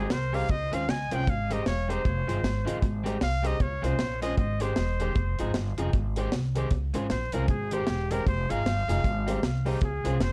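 A swung eighth-note feel at 154 BPM in 4/4 drives this bouncy, joyful ska passage in Ab major, tuned slightly below standard pitch at A4 = 438 Hz and cut from a longer piece. The deep reggae drum kit enters at 0.1 seconds with a dry, up-front sound of tight kick, medium-tuned snare and hi-hat, touched with tape echo, while a woody pizzicato upright bass with steel strings sits just as prominently beneath it. An electric guitar at the edge of break-up supplies dark, picked accompaniment, and a mellow, worn upright piano adds boxy, short stabs with audible action noise and a slightly detuned, intimate character. Over them a close-miked trumpet carries a punchy, pop-style solo with light vibrato and its own tape echo, running the full length of the clip. The harmony cycles through Dbmaj7, Abmaj7, Fm7 and back to Abmaj7, and the overall mix is dusky and warm with little reverb.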